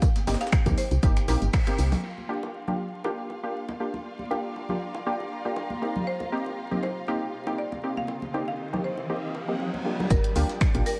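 Opening on muted, detuned dub chord stabs under a filter sweep, with vinyl crackle, a punchy kick, a gritty shaker and snare, an overdriven house kit of hi-hat, finger snaps, tambourine and crash, bright hard-hand bongos and congas, a lush, distant violin section, a dry, buzzing marimba and a round, woody FM bass, this late-night deep house excerpt in G minor at 119 BPM, swung on the sixteenths, soon thins to the pumping stabs, hand drums and strings as the bass and drums stop. A blurred granular cloud pad then drifts in at 3.5 seconds, the marimba melody returns at 6.1 seconds, an electronic riser builds from 7.8 seconds, and the bass and drums come back at 10.1 seconds.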